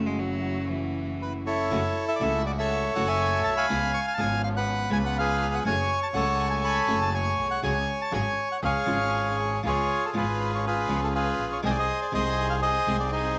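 Sultry and tense, this rubato tango in F# harmonic minor moves at 121 BPM in 4/4 and is cut from a longer piece. A focused, bowed cello carries a brief featured line up front for the first 1.5 seconds, while a fingerpicked nylon-string guitar, full-bodied and classical with audible finger squeak, supplies accompaniment and a smooth, bowed double bass holds the low end close and even. The reedy, dark bandoneon takes the melody from 1.2 seconds, sitting dry, close-miked and prominent in the mix. Behind it, a lush symphonic string section adds bowed stabs with vibrato from the background. The harmony turns from F#m7 through C#7, F#madd9 and C#sus4 to a closing G#/B#, and a moderate spring reverb with small room ambience frames the ensemble.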